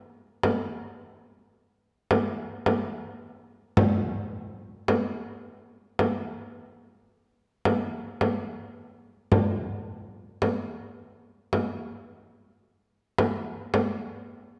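In free time, this stately Arabic fragment from a longer piece features a lone frame drum that enters at 0.4 seconds and plays until 14.0 seconds. The drum sits close and up front, its warm, dry acoustic tone shaped by soft hands, while the recital hall around it adds a lush reverberant tail.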